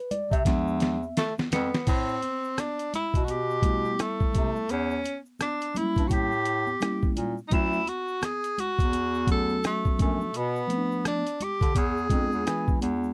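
A dry, close 1970s-style studio sound gives this cool, mellow jazz-hop excerpt at 85 BPM a swung 4/4 feel. A mellow tine electric piano takes a solo at the opening while a gritty, compressed, pitched-down boom bap drum kit plays a fill from 0.5 seconds, with a thumpy kick and medium-tuned snare up front, and ringing congas and egg shaker sit in the background. A breathy, vintage bass clarinet carries the low line while a punchy tenor saxophone with light vibrato, scooped notes and a smooth top takes the melody from 1.2 seconds over chords such as Am9, Dmaj9 and E7b9.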